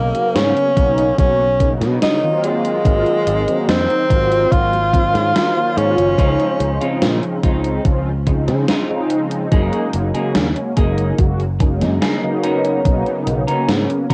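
A straight 72 BPM 4/4 pulse from a gated, overdriven 80s digital drum machine on hi-hat and snare, joined at 0.8 s by a thumpy, up-front electronic kick, drives this woozy, faded vaporwave fragment in Db major, where a breathy tenor saxophone with scooped notes and vibrato sings a jazzy solo melody until 7.0 s over dark, detuned sawtooth synth brass hazed with chorus and cassette tape, and a direct fretless electric bass, before a clean, picked semi-hollow guitar slips in at 6.2 s with a lush-chorused riff, the whole cut captured as a home cassette recording in a modest room.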